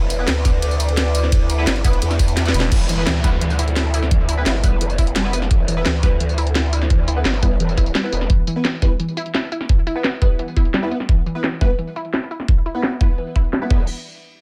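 A growling, saturated bass sits up front in this tense, dark technical drum and bass excerpt, riding over a knocking electronic kick, a layered kit with a cracking snare and bright hats, a nasal band-passed chord stab, a lush detuned unison pluck arpeggio that enters at 2.7 seconds, a brief thick FM bass growl, a background downlifter and a moody analog pad beneath it all.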